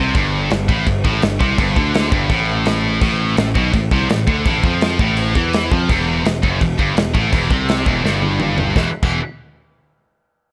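A dry mix with little reverb carries this aggressive, heavy metal excerpt at 167 BPM in E minor, cut from a longer piece. A bright, scooped, double-tracked high-gain guitar riff sits up front in the low register, moving from G5 to A5 to Em before landing on E5 at 8.8 seconds, while a dark, round fuzz bass with overdrive holds down the low end beneath it. An acoustic studio kit with a tight kick, medium-tuned snare, toms and crash cymbal drives the straight 4/4 pulse and breaks into a fill from 8.0 seconds.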